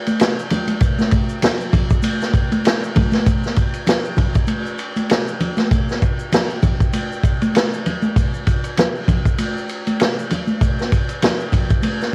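A vintage drum kit and congas with egg shaker open this cool, smoky hip hop excerpt together, settling into a 98 BPM 4/4 groove with a 57% swing on the sixteenths. The acoustic kit sits up front with a punchy kick, a medium-tuned snare and dark hi-hat and ride cymbals, its mid-forward, rolled-off sound colored by cassette tape, while the band-limited, vintage congas and shaker sit lower in the mix. Light studio reverb, a home cassette recording and vinyl crackle shade the whole recording, and the opening passage gives way to a new section at 3.3 seconds.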